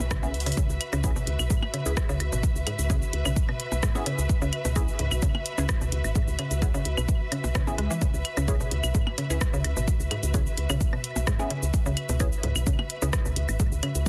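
A woody FM bass, a tape-warm house kit of cabasa, hi-hat and rim click, blip and clave percussion with tape echo, and a clear, bowed string section with vibrato open this sparse, quirky minimal techno excerpt at 129 BPM in C# minor, with the bass and strings pumping under a punchy, up-front electronic kick that enters at 0.1 s. A bright, chorused, mallet-like FM pluck carries the riff through dub echo and sidechain pumping, while a muted, nasal sawtooth chord stab treated with phaser and tape echo runs until 13.1 s. A drum fill lands at 0.3 s, and the track sits in light reverb with a dense, heavily limited modern master.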